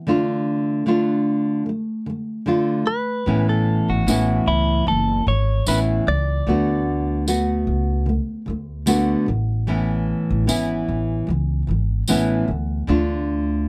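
A fingerpicked nylon-string guitar opens this carefree, heartfelt acoustic pop excerpt, its deep classical tone close and up front, with an audible finger squeak. A clean electric guitar, recorded direct and compressed with a phaser, carries the melody from 2.9 to 7.2 seconds. At 3.3 seconds a pizzicato upright bass joins with a woody, growly low end. A jingly tambourine then adds light percussion. The groove has a relaxed sixteenth-note swing over chords that move between Dm, Aadd9 and D6, and the dry, close 1970s-style studio sound carries only a touch of reverb.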